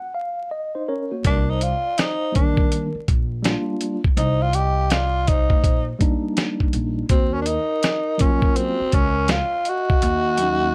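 Jazz-hop excerpt at 82 BPM in C minor with a smoky, nocturnal swing, opening on a mellow tine electric piano fill alone before a dusty, gritty sampler-style drum kit with a thumpy kick, woody pizzicato upright bass, a metallic vibraphone ringing in the background with plate reverb, and a growling, breathy tenor saxophone lead with scooped notes and plate reverb all enter around 1.2 seconds over Ebm9 and Cm9 chords, wrapped in vinyl crackle.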